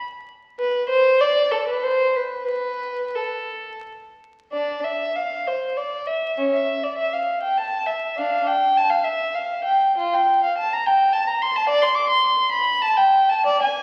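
In a rubato triple metre, this short, flowing and grave excerpt from a baroque-style suite movement for unaccompanied violin presents a single bowed, up-front player whose tone is smooth on top, rich with vibrato and expressive portamento, entering at 0.6 seconds and sounding through a wet recital hall reverb under the crackle of a very old 78 rpm record.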